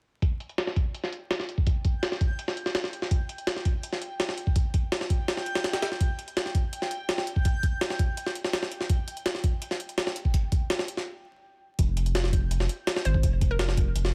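A dark, raw excerpt of drum and bass in the jungle style opens at 0.2 seconds with a sampler-style kit at 166 BPM in straight 4/4: gritty, compressed, pitched-up breaks with a thumpy kick, a high-tuned snare and tape-warm hi-hats, all up front and softened by low-pass filtering in a small room. A bed of vinyl crackle runs underneath. A reversed, dreamy triangle texture holding G5 drifts in the background, its granular body swelling through built-in reverb before ending ahead of a brief stop. At 11.8 seconds the drop arrives with a deep, thick sine sub bass, saturated and up front, sustaining notes between F1 and Ab1. A little later, a hollow, bouncy square-wave pluck with a detuned noise layer plays between Bb4 and C5, thickened by chorus and trailing dub echo.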